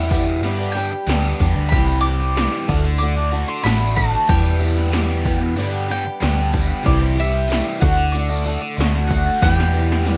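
A rough home-demo mix with digital ambience carries this nostalgic, warm folk rock and heartland rock excerpt in G major at 93 BPM, where a mellow, round double-strung mandolin sings the melody over a boxy picked steel-string acoustic guitar and a biting, double-tracked overdriven electric guitar riff colored by phaser. A dark, up-front hollow-body short-scale bass anchors the G, Cmaj7, D and Em progression, while a very quiet, clean tonewheel organ with key click and rotary speaker holds sustained chords. Punchy 80s electronic pad drums with a gated snare, metallic hats and gated reverb on snare and toms, re-recorded in a large room, enter together with a grainy, distant egg shaker at 0.1 s and close on a drum fill at 9.4 s.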